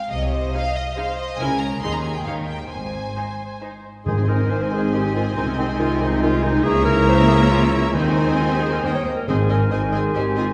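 Graceful and spirited, this quick classical-period movement for symphony orchestra in Ab major moves in a straight 3/4 at 138 BPM, opening with lush, vibrato-rich first violins carrying the melody over a clear second violin line, a focused viola accompaniment in the background, and smooth cellos and focused double basses anchoring the bass. At 4.1 seconds the winds join: a clear clarinet, silvery flute, distant oboe and dark, soft-edged bassoon weave secondary lines alongside mellow French horn chords. Very quiet, articulate timpani struck with hard mallets punctuate briefly, all set in a concert hall reverb heard from further back in the room, the passage cut from a longer piece.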